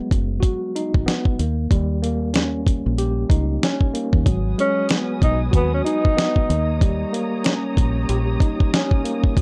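A dry, gritty hardware recording with little reverb gives this moody boom-bap hip-hop cut from a longer piece a raw, close feel at 94 BPM in 4/4, with a swung 16th-note pulse. Up front, a compressed, sampler-style drum kit lays down a thumpy kick, fat snare and hi-hat, while a deep, round fingered electric bass sits low and dark with a foam-muted tone. A worn, slightly out-of-tune tine electric piano plays clean accompaniment through its built-in speakers, filtered at both ends, over chords moving between G#m7 and D#7. At 4.3 seconds a lush bowed string section enters quietly behind the band, its sul tasto chords carrying vibrato and a soft attack. From 4.6 to 6.8 seconds a breathy tenor saxophone offers a brief, whispered jazz-style solo line, its scooped notes and smooth top trailed by tape echo.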